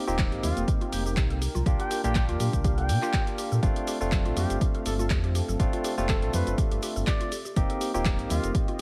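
A veiled, bucket-muted trumpet with light vibrato and 12-bit sampler grit carries a soulful melody through this deep house excerpt. Beneath it sit a punchy, tape-warm electronic kick, an analog drum machine of handclaps, hi-hat and shaker, and bright congas in the background. A deep sine sub bass with tube saturation, barky electric piano stabs through a combo amp, and woody FM mallet-like plucks in delayed arpeggios fill out the arrangement. A very quiet, detuned sawtooth pad holds sustained F9sus4, C9sus4 and G9sus4 chords. Sidechain pumping runs through the bass, keys and pluck, all in a dry room dusted with vinyl crackle.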